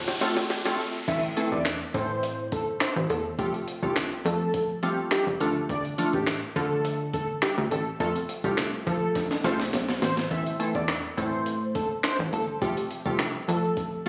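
Confident yet bittersweet, this dance-pop passage in A minor moves at 104 BPM, opening with a brief build-up where a very quiet, round horn-like synth lead and an electronic riser sit over a drum fill and a filter sweep, joined almost at once by a crystalline, warbling wavetable pluck with chorus, before the drop lands at 1.1 s. From there a thick, bold unison lead with tape echo carries the melody over that pluck and a punchy, funky analog bass, all three pumping against the sidechain. Up front, a gritty, overdriven jungle sampler-style kit with a thumpy kick, handclaps and crash drives the groove, adding another fill around 9.2 s, while a lush hall reverb and a phone-in-the-room quality colour the whole sound.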